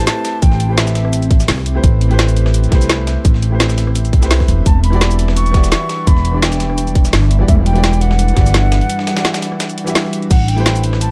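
A melancholic, lush liquid drum and bass piece at 170 BPM in A dorian opens with a mellow, close-miked silver flute with vibrato and digital delay, over an intimate concert grand piano with audible action noise and dub echo, an ethereal pad with chorus, phaser and 12-bit sampler grit in the background, and an up-front woody pizzicato upright bass, as the chords move from Am9 to Em9. A tight, up-front electronic kick enters at 0.4 s beneath a drum and bass kit of metallic hats, snare, rim clicks, cabasa and crash, plus a gritty, compressed sampler-style kit of filtered hats and snare sitting in the background. The flute falls silent and returns at 4.7 s, and a break arrives at 8.9 s in this dark, dry production.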